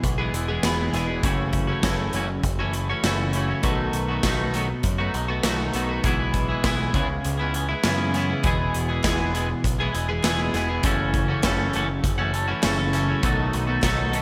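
A steady, straight 4/4 pulse at 100 BPM comes from a big, up-front rock drum kit with a punchy kick, medium-tuned snare, hi-hat and tambourine, anchored by a growling, overdriven picked electric bass in this wistful yet upbeat indie rock passage in E major. A scooped, twangy electric guitar with subtle chorus and analog delay plays riffs alongside a compressed, up-front twelve-string electric guitar with slapback echo, moving through E, F#m7, B7 and C#m7. A crisp, distant group handclap enters barely audibly at 9.0 s, and a lush hall reverb gives this fragment of a longer piece a big arena sound.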